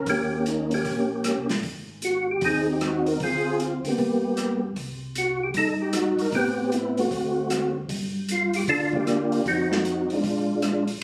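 A swinging 4/4 groove at 154 BPM drives this short, bluesy, greasy soul jazz organ trio passage, cut from a longer piece. Up front, a percussive tonewheel organ carries the melody between Ab3 and Bb4, its round, dark tone marked by third harmonic percussion, chorus vibrato and a slow rotary speaker. Beneath it, a second, mellow tonewheel organ plays the bass line from Ab1 to D3, clean with key click, vibrato and its own slow rotary swirl. A vintage acoustic drum kit of hi-hat, kick, rim click and snare supplies punchy kick and a medium-tuned snare, its rolled-off top and pumping small-room sound giving a lived-in feel. The harmony moves from Eb6 and Ab through Dm7b5, Gm and Cm to Amadd9, D7 and Gm7, then reaches Fm7 at 9.5 seconds and Bb7 at 10.2 seconds. Captured on a phone in the room, the whole performance sits in a compressed club ambience with a moderate large studio reverb.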